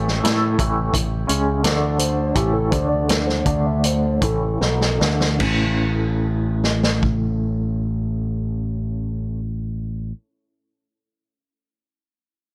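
Hypnotic and kaleidoscopic, this short psychedelic rock excerpt in A mixolydian moves in a straight 4/4 at 74-87 BPM, slowing down over its first 5.4 seconds. A clean, twangy electric guitar plays a scooped, picked riff through tremolo and a low-pass filter, while a bright, overdriven fingered bass growls up front beneath it. A vintage acoustic kit with a punchy kick, medium-tuned snare and dark cymbals sits forward in a studio room, adding a fill before dropping out at 7.2 seconds. A fuzz lead guitar with distortion and digital delay sits in the background, playing a melody from 2.0 to 5.0 seconds amid a filter sweep. A buzzy combo organ with light vibrato holds very quiet sustained chords, moving between A and D5, before the passage shifts into a new section at 5.4 seconds.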